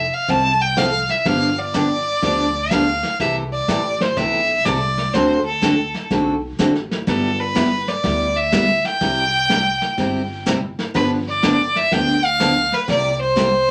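A clear, focused fiddle carries the melody up front, bowed by one player with a light vibrato, in this cheerful western swing excerpt at 124 BPM in C major with a lively swung feel. Beneath it, an upright bass plucks woody, growly, thumpy low notes, while a bright picked steel-string acoustic guitar fills in the accompaniment, its finger squeaks audible. A vintage kit played with brushes adds a dark, smooth pulse from brushed snare, hi-hat and a punchy kick, its top rolled off in a small-room sound. The chords move through Fmaj7, G7, C6, D7 and G6, then C and G7, before turning to C7 near 12.9 seconds. The whole band sits in a wet club ambience under a layer of vinyl crackle, adding a vintage touch to the swinging groove.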